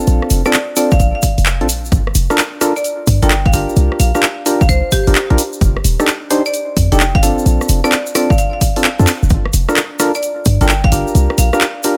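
A skippy two-step garage groove in 4/4 swings its sixteenths, with a punchy, tape-touched electronic kick sitting up front from 0.9 seconds and a layered house kit of handclaps, hi-hat and rim click adding studio reverb and warm hats. A short 808-style bass, tight and sine-based with a noise layer, pumps against the sidechain and decays under the groove. Hollow, dark organ stabs carry chorus and digital delay as they punctuate a soulful progression moving through Bbmaj7, Gm7, C7sus4 and F13. Above them, a bright marimba struck with hard mallets plays the melody through its own digital delay, while a grainy egg shaker rattles quietly in the background as if recorded in a small room. A drum fill lands at 9.1 seconds in this short cut from a longer piece, and the overall mix stays dry.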